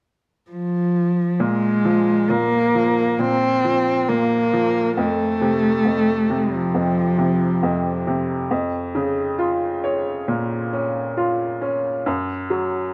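A close, expressive bowed cello carries the melody with vibrato, portamento and a soft attack from 0.5 to 8.1 seconds in this heartbroken, melancholic pop piece at 68 BPM in Bb minor, joined at 1.4 seconds by a bright, woody upright piano accompaniment that plays on after the cello stops, all in a lightly reverberant space.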